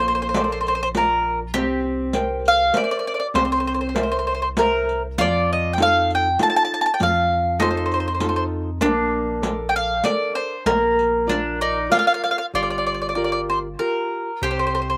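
A romantic, lively Italian folk serenade in three, this excerpt opens with a mandolin carrying the melody up front, its round, double-strung picked tone sitting high over a second, woodier mandolin line tucked lower in the mix. A fingerpicked nylon-string guitar fills out the accompaniment with a full-bodied, deep classical sound, while a punchy sub bass with a fast, pitch-dropping attack and sustained sine tone anchors the low end. A riq enters at 0.3 seconds, its dark jingles struck with soft hands and carrying a vintage, band-limited color, and it falls away at 12.4 seconds. The harmony moves from Bbmaj7 through C7 and F7 before returning home, then shifts at 12.5 seconds toward Gm7 and a closing C5 as the passage turns to a new section. The sound is dry and open-air, with little reverb and an outdoor feel that keeps the plucked strings close and intimate.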